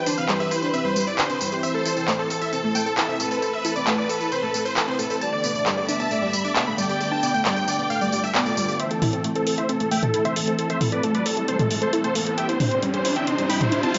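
A huge, euphoric supersaw lead carries the melody up front, its bright detuned sawtooth tone rounded by cassette tape colour and a low-pass filter, in this emotional, bittersweet uplifting trance excerpt. Beneath it a rich studio violin section plays a close, intimate second line with light vibrato and tape echo until 8.7 seconds. A lush unison pluck spins arpeggios through subtle chorus and tape echo, while a silky analog string pad holds sustained chords with ensemble chorus. A punchy analog drum machine, heard in a large room, drives the straight 4/4 pulse with handclaps, hi-hat, tambourine and toms. From 8.8 seconds the music moves into a build-up: a catchy, full-bodied plucky unison lead joins in the background, filter sweeps move across both leads, and an electronic riser enters at 10.1 seconds, all within a light reverb and a soft-topped overall sound.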